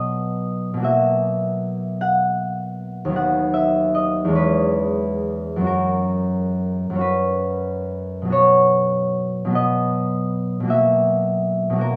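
Flowing in a gentle 6/8 with free rubato, this classical solo harp piece moves at a slow 44-56 BPM, counted in dotted quarters. The mood is graceful and serene, settled in B major with the instrument tuned to A4 = 438 Hz. A single concert harp carries the whole 12 seconds, sitting up front with an acoustic, thumb-plucked tone whose notes ring out warm across a span from D#2 up to F#5. The harmony drifts from B through F#7/B, B/D#, C#m7/E and F# before returning to B and closing on F#7/B, giving the passage an open, unresolved feel, as it is cut from a longer piece. A moderate studio reverb and a small room ambience lend the harp a soft halo while keeping it close and intimate.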